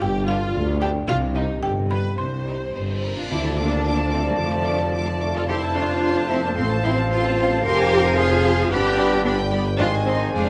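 A buzzing, woody marimba picks out the opening melody of this sneaky, whimsical film cue in 2/4 and falls silent at 3.0 s, over expressive viola with portamento, a smooth cello section, a clear double bass section, a punchy background tuba and a ringing, very quiet harp. From 0.3 s, lush violin sections carry the tune and a faint second line, while a very quiet cymbal swell and tam-tam glimmer beneath. A band accent at 3.3 s opens a quirky passage in which a hollow flute, a distant clarinet, a very quiet bassoon and a mellow French horn section join, the horns with sustained chords, all in light reverb and close, detailed sound, in a brief excerpt cut from a longer piece.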